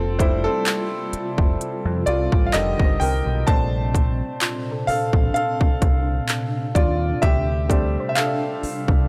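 A clear, slightly worn grand piano takes the lead in this tender, smooth contemporary R&B fragment, joined from the start by an ethereal, detuned pad with chorus and reverb, a dark, round dub-style picked electric bass, and a very quiet, soft pluck adding texture. At 0.2 seconds a trap kit comes in up front with a hard-clipped kick, crisp hi-hats and handclaps, riding a lightly swung 16th-note feel. The piano moves through lush extended chords over a dry, gritty recording with transformer saturation and digital ambience.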